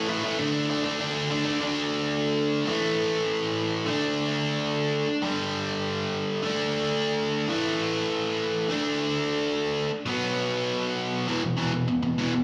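A biting, overdriven electric guitar carries this short, rowdy punk fragment on its own, playing from 0.0 to 12.4 seconds in a straight 4/4 at a fast, energetic clip. The picked, double-tracked part sits up front with a bright edge, spanning low E2 up to D4, and a slapback echo trails each attack. It drives through a string of power chords, returning again and again to D5 between moves to A5, G5 and B5. A new passage begins at 1.6 seconds, and the fragment closes on E5 at 11.3 seconds. The sound is that of a live club gig heard through the venue's PA, with light, roomy reverb framing the guitar's raw energy.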